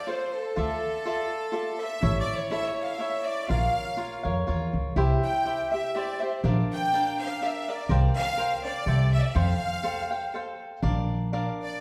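Mexican folk in the mariachi tradition, this short excerpt moves in a lilting 3/4 at 123 BPM with a gentle swing, carrying a romantic, proud mood in F major. A violin section leads the melody with a biting, intense tone and light vibrato, sounding clear and close in the ensemble. Beneath it, a cavaquinho supplies picked accompaniment that is crisp and warm, present from the opening moment to the end at 11.8 seconds. An upright bass enters at 0.6 seconds, playing pizzicato with a woody, growly, thumpy low end. The harmony travels from F through Dmadd9, A and Bbm before resolving via C7sus4 and C6 to Fadd9, then turning to Bb. A recital hall reverb places the group further back in the room, lending the performance a resonant, spacious air while the instruments themselves remain up front.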